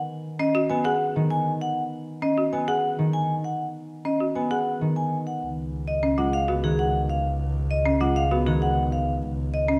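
A straight 6/4 pulse at 197 BPM drives this propulsive, hypnotic minimalist classical piece in Db mixolydian, where a bright, fingerpicked concert harp accompaniment and rustic, woody folk marimba arpeggios under hard mallets support a metallic, ringing vibraphone melody played up front with the motor off, before a bowed double bass with light vibrato and a soft, airy sul tasto tone joins on a low Db at 5.4 s as the harmony shifts from Abm7 to Db7sus2, the whole placed in a moderate scoring stage reverb with a dark production.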